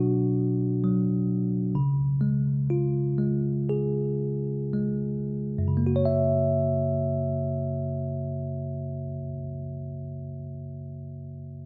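A bell-like, bright tine electric piano sits up front in this slow, longing pop fragment at 53-68 BPM in 4/4, easing the tempo back through the opening 5.8 seconds as it moves from Bm to C# before shifting to F#7 in a second section, all bathed in a wet plate reverb.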